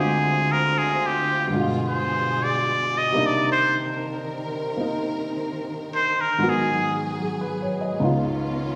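A trumpet with a straight mute leads this romantic, late-night jazz ballad, its brilliant, nasal tone and soft attack sitting up front as it plays a swung solo melody until 7.0 seconds. A warm baby grand piano accompanies it, also up front, while a close, lush symphonic string section holds bowed, expressive chords with vibrato beneath it through a progression from Dm7b5 and G7b9 to Cm7, Abm7 and Db9. The whole excerpt is cut from a longer piece and rings in the wet reverb of a recital hall, like a church or concert hall.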